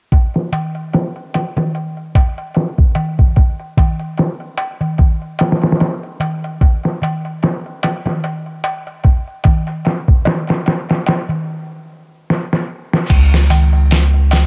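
Hypnotic and melancholic, this trip hop excerpt moves at 74 BPM with a swung sixteenth-note feel, built on a gritty, compressed sampler-style drum kit up front, its thumpy kick, fat snare, hi-hat and crash all low-pass filtered and tape-worn. A small, crisp metal-shell darbuka played with hard hands sits close but lower in the mix, while a stop arrives at 11.5 seconds and a drum fill follows from 12.3 seconds. At 13.1 seconds a deep, round dub sub bass enters up front on C#2, sustained and soft, all within a dusty home-cassette recording with digital ambience.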